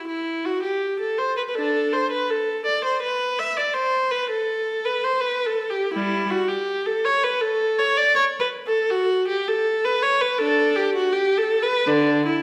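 A wet recital-hall reverb surrounds a single bowed viola, placed up front, in this flowing, dance-like baroque-style suite movement heard as a short cut from a longer piece. The solo instrument's tone is rich and focused, with vibrato colouring its lines as it ranges from D3 to E5 at a rubato 81 BPM in 4/4. The music settles into D major from 5.9 s.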